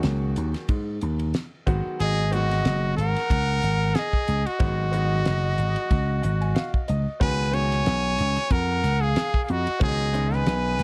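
The production is dark and close, with little reverb, giving this funky, nocturnal slice of electric jazz fusion a warm, dry feel; it is cut from a longer piece. A vintage slap bass sits up front with an amped, punchy, warm tone, while a damped 70s acoustic kit supplies a fat snare, tight kick, and dark hi-hat and ride cymbals under a relaxed swing. A polished baby grand piano comps throughout with a bright, present, intimate sound and audible action noise, and it steps forward with a short fill at 5.9 seconds. At 2.0 seconds a forceful, brilliant trumpet takes the solo melody, its jazz-style phrasing marked by scooped notes and light vibrato. A breathy metal flute enters alongside it as a second line, tongued and shimmering with vibrato, as the harmony moves from minor seventh chords to a suspended ninth.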